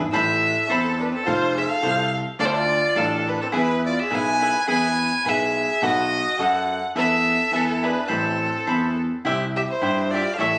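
Captured on a phone in a recital hall, this short cut from a longer mariachi piece has a dull top end and a moderate reverb that lingers around every note. A rich, smooth violin carries the festive, proud melody up front with vibrato, while a mellow, distant trumpet plays a quieter second line and a crisp, bright cavaquinho picks out the accompaniment. Beneath them a clear, boxy grand piano holds the bass with deep low notes, long sustain and audible key noise, and the music shifts into a new section at 9.2 seconds before the cut ends at 10.6 seconds.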